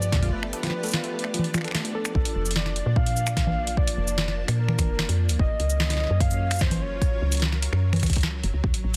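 A warbling, detuned lead with chorus, tremolo and digital delay sings a wistful melody over silky string-machine chords, a woody, round FM bass, a deep, up-front kick and a booming analog drum machine of crisp snare, metallic hats, cabasa, congas and finger snaps, while a lo-fi, wave-folded pluck with tape echo spins arpeggios only until 2.0 seconds in this dry, dense, glitchy IDM fragment that moves from G7 through Bbmaj7 to Gbmaj7.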